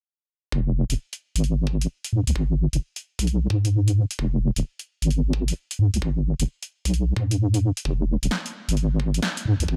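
A dry, gritty hardware recording with a digital ambience frames this moody, late-night two-step UK garage passage, cut from a longer piece and driven by a swung sixteenth-note shuffle. Up front sits a deep, dark wobble bass, a detuned blend of square and sine tones with fast attack, compression and chorus, which runs from 0.5 seconds under a continuous filter sweep. Beneath it, a layered, knocking electronic kick re-recorded in a small room and a punchy, tape-warm analog drum machine supplying hi-hat and snare from 0.9 seconds keep the groove taut.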